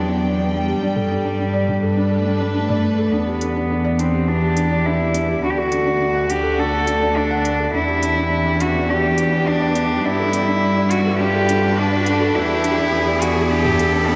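Melancholic and hypnotic, this piano and strings electronica piece moves at 104 BPM in 4/4 with a straight feel, in E minor, cut from a longer piece. An up-front solo cello carries the melody throughout, its pure, floating tone softened by a low-pass filter and trailed by analog delay, while a dark chamber string section holds sustained chords with light vibrato and a smooth top. A felt-muted upright piano plays a mellow riff, its thick felt and audible action noise made lush by chorus and analog delay, and an earthy bowed double bass section anchors the low end. An organic electronic drum kit of smooth, tape-warm hats and filtered toms enters at 1.0 seconds, and a build-up begins at 3.1 seconds as the harmony cycles through Em7, Gadd9 and D. A background riser joins at 7.7 seconds, and the whole dreamy mix is soaked in a cathedral reverb with a long five-second tail.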